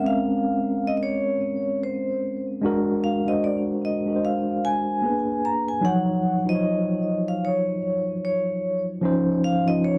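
A mellow tine electric piano and a vibraphone struck with medium hard mallets open together, setting a sultry, late-night R&B mood with a gentle 16th-note swing. The electric piano carries the accompaniment in a mellow, warm, clean tone heard through its built-in speakers, sitting up front beside the melody. Above it, the vibraphone sings the tune with a metallic, ringing voice, colored by a slow motor vibrato. The harmony drifts through rich minor ninth and altered dominant chords, moving from Bbm9 toward Ebm9 and settling on Dbmaj9 near 9.0 seconds. Light reverb and a dry, close 1970s-style studio sound keep both parts intimate across this 10-second cut from a longer piece.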